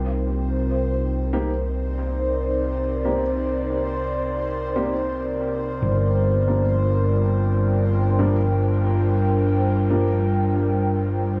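Set in a moderate echo chamber reverb, this meditative, spacious ambient excerpt pairs an airy, breathy, chorused pad sustaining Cm7 and Gm7 chords with an overdriven, round fingered electric bass up front, a resonant, bubbling sawtooth texture with random filter steps, chorus and its own built-in reverb, and, from 1.3 s to 10.1 s, dark, woody upright piano stabs in the background, low-pass filtered, swept and trailed by dub echo.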